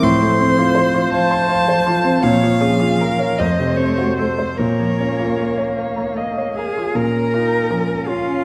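A short passage cut from a slow romantic classical movement for piano quartet opens with all four players together, unfolding in 6/8 with a tender, freely rubato feel. A clear violin carries the melody, bowed with vibrato and sitting close, while a cello adds a focused second line beneath it. The grand piano sits up front with a vintage, short-sustained tone as accompaniment, joined by a viola that sounds rich but distant. The harmony passes through F over A, B-flat minor and F, returning to B-flat minor at 4.6 seconds. A dark production and a scoring stage reverb place the quartet in an enveloping, roomy space through to the end at 8.4 seconds.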